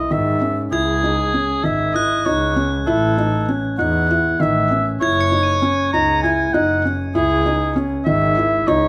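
A solo oboe in classical style carries the melody over a felt-muted upright piano's dark, intimate arpeggios, with audible action noise, and a bowed double bass with rich vibrato, while shimmering bell-like crotales enter at 0.7 s in this pensive, urgent contemporary chamber piece in C# minor, moving in 7/8 at 196 BPM (eighths) through E, C#m, A, F#5 and C#madd9, recorded with close, detailed microphones and light reverb.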